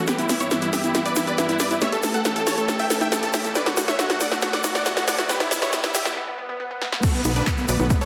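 Soaring and emotional, this short cut from a longer uplifting trance piece runs at 138 BPM in B minor, spending its first 7.0 seconds in a build-up before dropping. A huge, airy supersaw carries the melody up front, its detuned, bright voice shaped by sidechain pumping, a low-pass filter and dub echo. Beneath it a lush unison pluck plays arpeggios through a phaser and tape echo with a filter sweep, while a punchy analog drum machine with overdriven snare, handclaps, congas, hi-hat and crash cymbal drives a drum fill, backed by a grainy egg shaker in the background. After a brief break, an electronic swell and downlifter enter from 6.4 seconds, and at 7.0 seconds the drop lands with a dry, overdriven kick, joined at 7.2 seconds by a tight, driving sequencer bass on B1. The chords move from Em/G through A7, Bm7 and Em before settling on Bm7 at the drop, all set in a wet digital room reverb under a dense, heavily limited modern master.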